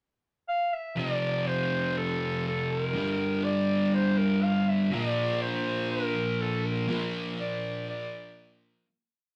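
Hazy, blissful rock piece in which a clear, distant clarinet opens alone at 0.5 s with a soft-attacked, classical-style solo built on song-like motifs. At 1.0 s an up-front, double-tracked fuzz guitar joins with a picked riff of ringing distorted chords moving through F6, Gm and Bb. The rough rehearsal-room sound carries saturation and a wet studio reverb before the piece fades out from 6.9 s.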